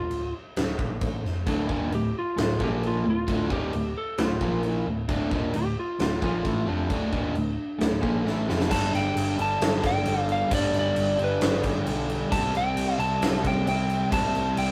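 A rough rehearsal-room recording with moderate reverb captures an aggressive, heavy hard rock passage in D minor at 133 BPM, cut from a longer piece, where a slightly broken-up, compressed lead guitar carries the melody over a dark, round hollow-body short-scale bass and a big-room arena drum kit with a fat snare and punchy kick sitting up front. At 1.5 s three riffing guitars enter: a bright overdriven electric guitar, a sludgy distorted guitar in the background, and a crunchy double-tracked guitar that also sits behind the mix. A drum fill at 8.3 s leads into a new section at 8.7 s, where the crunchy guitar drops out and the harmony moves from D minor and B-flat power chords to G and C power chords.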